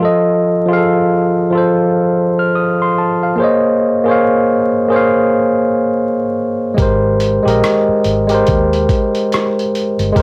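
Swung sixteenths in a relaxed 4/4 pulse give this nostalgic, mellow lo-fi hip hop fragment its lazy lilt, as a clean, up-front tine electric piano, run through a combo amp with cassette tape coloring and a low-pass filter, moves alone through F7 and Bbm11. At 6.8 s, on an Abmaj9 chord, a dark, foam-muted fingered electric bass with a round, punchy tone arrives together with a gritty, compressed sampler-style soul drum kit of hi-hat, rim click and thumpy kick, re-recorded in a small room. Light reverb and vinyl crackle add to the homespun cassette sound.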